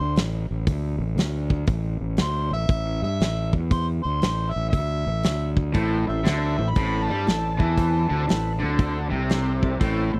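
A swung 4/4 groove at 118 BPM drives this gritty, heavy blues rock and southern rock passage in A minor, cut from a longer piece, with a big rock drum kit's punchy kick, medium-tuned snare and hi-hat up front beside a growly, fuzz-soaked fingered bass. A mellow, distant harmonica carries the melody until 8.5 seconds. At 5.7 seconds a bright, double-tracked raw garage guitar riff joins, while a thick overdriven tonewheel organ holds sustained chords through a slow rotary speaker in the background, all captured in a dry, close 1970s-style studio sound.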